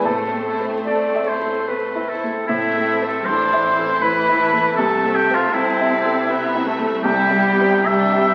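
A lush, lyrical classical passage in A minor, cut from a longer piece, moves in a rubato 3/4 at roughly 70-83 BPM. A clear, intimate baby grand piano carries the melody with audible action noise, joined by a rich, expressive violin section singing vibrato in the background. The up-front oboe, entering at 0.1 s, plays a second line with a smooth top, while a distant, hollow silver flute, a second, intense violin section and a solo clarinet in the background add further lines. A focused viola section supplies the accompaniment, the cello section (very quiet, entering at 0.1 s) and a woody double bass section form the bass, and a mellow, close-miked French horn section holds a sustained chord only until 1.7 s. The harmony rests on A minor before shifting to Am/C at 4.8 s and C major at 7.0 s, all set in a wet stone room and heard through the crackle of a very old 78 rpm record.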